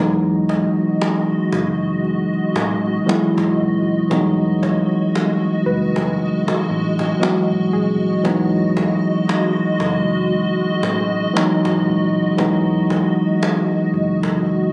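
Captured on a phone in the room, this short, compressed cut from a longer contemporary R&B piece sits in a light club reverb. The mood is romantic and smooth, with a lazy swing on the sixteenths and a single Emaj9 chord carrying the whole passage. A mellow tine electric piano plays accompaniment clean and up front from the first moment, while a dark, foam-muted vintage fingered electric bass stays round and low in the background. From 0.3 seconds a hollow, flute-like pad with a slow attack holds sustained chords, its detuned, warbling tone thickened by ensemble chorus. A cajon enters at the same point, woody with faint snares and hard hands, sounding distant as if heard across a large room. At 0.5 seconds a soft, gentle pluck adds texture with a fast attack and decaying tail, treated with chorus and delay, and it drops out at 13.2 seconds.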